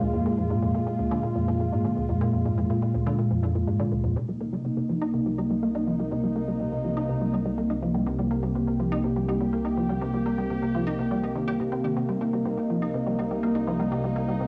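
Ambient, sequencer-driven space music at 123 BPM in 4/4, mysterious and expansive and cut from a longer piece, opens with an up-front, warbling, vintage sawtooth pad holding sustained chords alongside a juicy, squelchy, detuned blip-pluck riff carrying analog chorus and tape echo; the harmony moves from Bb7 to Cm7 at 4.2 s to settle into C minor, a nasal, pulse-width-modulated analog drone bass enters on C2 at 5.3 s, and the pad and pluck carry a cassette-tape coloring inside wet studio reverb on a home cassette recording.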